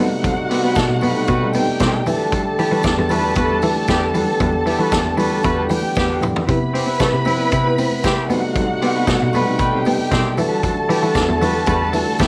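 Disco in E minor at 116 BPM, this glamorous, driving passage is cut from a longer piece and moves in a straight 4/4 through a chord cycle of B7b9b13, Em11 and Cmaj7. A rich, smooth bowed cello carries the bass line with vibrato, while a dark, woody string section plays a lush second line above it. A tonewheel organ holds clean sustained chords in the background through a stopped rotary speaker, and a mellow, fingered electric guitar adds accompaniment with harmonic tremolo. From 0.2 seconds a vintage acoustic kit with a tight kick and rolled-off top drives the groove, joined by very quiet congas with soft hands and a jingly tambourine, and a punchy, tight horn section adds stabs from 0.5 seconds. A drum fill at 6.0 seconds leads into the Cmaj7, and light reverb gives the whole a subtle sense of space.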